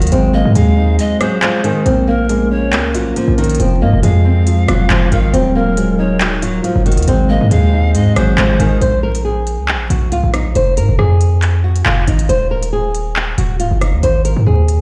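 A half-time drill groove at 138 BPM in Bb minor sets a cold, tense mood, as crisp electronic hats, handclaps and rim clicks with 12-bit sampler grit sit under a punchy, heavy 808 bass up front. A boxy fingerpicked flamenco guitar carries the melody through low-pass filtering and delay, while a soft felt-muted upright piano and a warbling, detuned lo-fi pad fill the first 8.8 seconds. An airy, reedy pan flute with vibrato joins them at 0.3 seconds, and all three drop away at 8.8 seconds. The whole fragment of this longer piece is set in a big, bare-room reverb with vinyl crackle.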